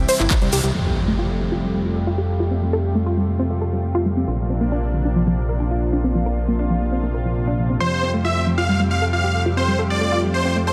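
Uplifting trance with a soaring mood: a lush, detuned sawtooth pad, a fat, tube-saturated analog bass and punchy unison pluck arpeggios with tape echo and a filter sweep all pump against the sidechain. Overdriven house handclaps and bright hi-hats join grainy, distant maracas only until 0.7 s, when an electronic impact hits. A huge, euphoric supersaw lead carries the melody from 7.8 s over the chords, all in a light reverb.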